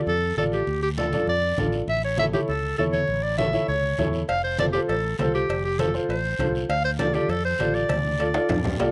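Danceable and driving, this cumbia excerpt puts a breathy, up-front clarinet with light vibrato on the melody, while a clear, woody upright piano with audible action noise accompanies it and a round fingered electric bass holds the low end. Raspy guiro and low-tuned, distant congas sit in the background, and ringing cowbell and timbales join at 4.3 seconds before a drum fill arrives at 7.9 seconds. The clarinet, piano and guiro carry a slapback echo in a dry outdoor setting, as the harmony moves through Dm, A and F before returning to Dm.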